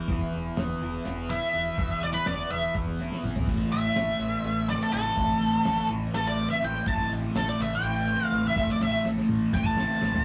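Psychedelic rock in a straight 7/8, dark and trippy, where a double-tracked fuzz guitar riff drenched in phaser drives over a faint, buzzing tanpura drone, a growling overdriven fingered bass and a cloth-damped, thuddy drum kit with a fat snare and rolled-off cymbals that fills at 3.1 and 8.8 seconds, while an up-front, dark octave-fuzz lead guitar with wah enters at 1.3 seconds for a solo, all captured in a rough, saturated rehearsal-room sound with a short booth ambience.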